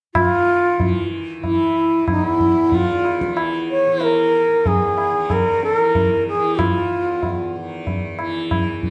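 Set in a stone room with a lingering reverb, this brief cut from a longer Hindustani classical performance sounds like a live ensemble sharing one space, meditative and devotional in a straight 5/4. A breathy, mellow bamboo bansuri carries the melody up front with a soft attack and rolled-off highs, falling silent at 7.6 seconds. Alongside it, a low-tuned, ringing tabla sits close, dry and up front, while a softly plucked tanpura hums a buzzing, shimmering drone through to 8.9 seconds.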